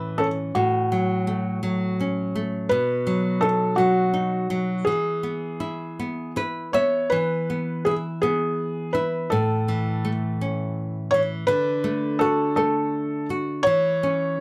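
Close, detailed microphones and a light reverb frame this short, innocent children's lullaby, cut from a longer piece, moving at a rubato 55 BPM in 6/8. Up front, a felt-muted upright piano carries the tender melody in a soft, mellow voice with audible action noise, while a bright, fingerpicked nylon-string guitar accompanies throughout and adds a fill from 6.0 to 7.1 seconds. The harmony drifts through chords such as A, B, E and D before the second section closes on C#m/E near 13.7 seconds.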